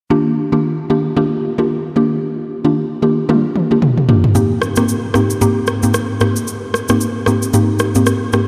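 A woody, round synth pluck with a mallet-like, percussive attack opens this joyful, sunny afrobeats excerpt in Eb major at 113 BPM, its chorused and phased chords moving from Ebmaj7 to Abmaj7 with a lightly swung 16th-note feel. At 3.3 seconds a layered deep house drum kit of rim clicks, shaker and toms enters with a fill, sitting up front beside the pluck, and the kick drops out for the final stretch from 7.5 seconds. The whole mix is soaked in a huge, dreamy ambient reverb with a long tail.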